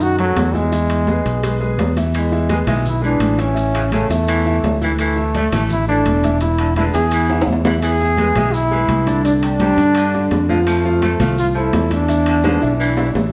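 A straight 4/4 salsa groove at 169 BPM drives this fiery excerpt, as damped, high-tuned congas, ringing metal-shell timbales, grainy maracas and a round, up-front fingered electric bass support a clear concert grand piano with audible action noise, while a bright, punchy trombone with vibrato carries the melody, a raspy, gritty baritone saxophone enters on a distant second line at 2.1 s, drum fills break in at 7.3 s and 12.4 s, and the band sits back in a wet, large studio reverb.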